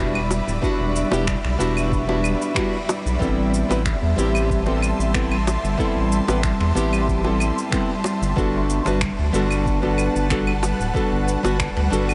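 A fingerpicked nylon-string guitar with tape echo plays accompaniment in this relaxed sunset chillout excerpt at 93 BPM, sitting up front beside a round, dark analog bass, while an ethereal, airy pad with ensemble chorus and tremolo holds slow-blooming chords over Em7, Am7 and Gmaj9; overdriven electronic claves, shaker and finger snaps, very quiet high-tuned bongos and a deep overdriven kick in the background fill out a dreamy mix soaked in huge ambient reverb.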